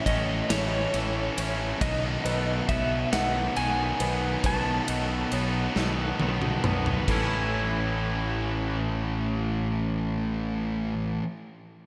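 A slow 6/8 pulse at 46 dotted-quarter beats per minute carries this cinematic, euphoric post-rock fragment in A lydian, moving from A to B7 at 1.8 seconds and settling back on A at 7.1. A clean lap steel guitar, played with fingerpicks and slide, sings the melody over the opening bars until 6.2 seconds, while a felt-muted upright piano adds soft, intimate arpeggios deep in the background until 7.5 seconds. Beneath them, a twangy, scooped electric guitar picks arpeggios as an overdriven electric guitar and a thick fuzz guitar drive a bright, heavy riff, all three running to the end. A growly fuzz bass sits up front in the low register, and a big rock kit with a punchy kick, bright cymbals and a medium-tuned snare rolls through a fill from 5.8 seconds before dropping out at 7.3. Slapback echo marks the lap steel, piano, twangy guitar and overdriven guitar, and a lush hall reverb gives the whole band a big arena sound.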